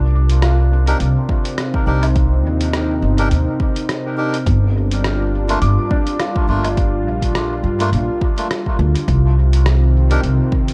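The woody, pizzicato upright bass sits up front with tube saturation, rolling through C minor across nearly all of this brief, deep and hazy ambient dub fragment at 104 BPM with a light 16th-note swing. Alongside it, a detuned analog pad with a slow attack holds smooth, warbling sustained chords through chorus, moving from Cm7 to Gm7 and back to Cm7 at 9.1 seconds. A felt-muted upright piano plays soft, mellow arpeggios in the background with dub echo, stopping at 9.1 seconds, while a reedy, breathy melodica adds nasal stabs, also trailed by dub echo. A compressed, pitched-down sampler-style kit of hi-hat, rim click and woodblock sounds muffled and small-roomed under its own dub echo, and an overdriven electronic kick enters at 1.3 seconds, deep and up front with the air of a large room. Light reverb and digital ambience wrap the mix in a hazy glow.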